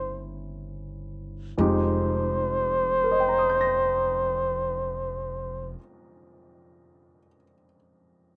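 Wistful and intimate, this short fragment of a jazz ballad drifts at a slow, swung pace, easing back over its opening 1.6 seconds. A mellow flugelhorn carries the melody up front on a high C with gentle vibrato and a smooth top in a solo jazz voice. Beneath it, a baby grand piano with a warm, natural tone and short sustain spreads chords across a broad range as the harmony moves from C7b9 to Fm9. An acoustic upright bass, plucked on steel strings, adds a woody, growly low end in its deepest register before falling silent along with the horn at around 5.8 seconds. The piano lingers alone until 8.4 seconds, and the dry, close sound, captured outdoors with little reverb, keeps the mood private and unadorned.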